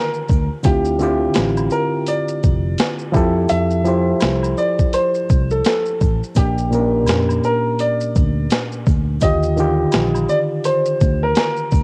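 An upright piano with a woody, smooth, vintage tone and short sustain carries the melody from the opening moment, alongside a reedy, overdriven electric piano pushed through a combo amp that fills out the chords, both sitting up front with a cassette-tape colour. This is a nostalgic, reflective lo-fi hip hop excerpt at 84 BPM in 4/4, with a 61% swing on the sixteenths and tuning set to A4 = 444 Hz. A boom bap sampler-style kit arrives at 0.1 seconds, compressed and gritty with a thumpy kick, a medium-tuned snare, hi-hat and shaker, its tape-warmed sound placed close to the listener. At 0.3 seconds a dark, round, punchy fingered electric bass joins with a foam-muted, amped tone, while maracas and woodblock with group handclaps add a faint acoustic, live-room layer in the background. The harmony drifts through Ebmaj9, Dm11, Fmaj9 and Bb6 before returning to Ebmaj9, all wrapped in light reverb and digital ambience that give it a homespun cassette feel.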